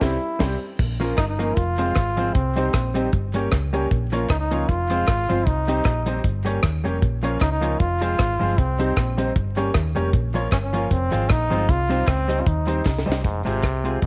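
A swung ska groove at 154 BPM in 4/4 drives this energetic excerpt in F minor, opening with a band accent before settling into a cycle of Bbm, Fm, Cm and Gdim chords. Up front, a deep reggae drum kit with a high-tuned snare, tight kick, rim click, hi-hat and crash sits beside a dark, round, foam-muted fingered electric bass that holds the low register. A brilliant trombone carries the solo melody with light vibrato, present and forward in a pop style. Beneath it, a clean, compressed hollow-body jazz guitar provides accompaniment, while a woody upright piano plays stabs further back in the mix. Very quiet, crisp group handclaps join at 1.2 seconds, and a drum fill at 12.9 seconds leads to the closing Fm chord, all framed by light studio reverb and a layer of vinyl crackle.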